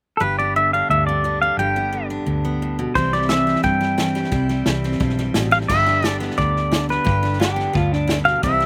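This short excerpt of honky-tonk and classic country sounds dry and close, recorded outdoors with little reverb and an open, roomless feel. A heartfelt, sunny pedal steel guitar carries the melody up front, its clean, compressed tone played with fingerpicks and slide, shaped by volume swells and a slapback echo. Beneath it, a full-bodied dreadnought acoustic guitar is picked in accompaniment, while a dark, round, foam-muted electric bass holds the low end with a punchy, amped sound. A natural-sounding drum kit joins at 3.0 seconds, its medium-tuned snare, kick, hi-hat and crash cymbal lifting the straight four-beat feel as the harmony moves from G to C and back. Near the close, at 7.4 seconds, an electric guitar through a small old amp adds a brief bright, twangy, slightly broken-up and lo-fi second line.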